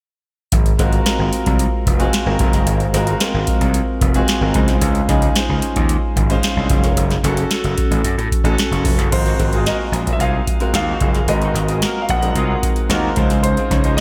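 A booming analog drum machine drives this glossy, upbeat slice of polished 1980s jazz-funk pop, its deep kick, crisp snare and metallic hats sitting up front alongside a gritty, overdriven slap bass that sounds bright and punchy. A grand piano joins at 0.8 seconds with clear, natural accompaniment touched by subtle chorus and slapback echo, adding a fill between 4.0 and 4.8 seconds as the harmony moves from Ab13 to Dbmaj9 and on to Gbm. At 9.1 seconds a new section opens on Ab13, where a baby grand piano takes the melody in a high register with its own slapback echo. Moments later a mellow horn section with light vibrato and a soft, vintage attack slips in behind as a second line, carrying a digital delay. A concert hall reverb gives the whole piece a big arena sound, and the excerpt is cut from a longer track.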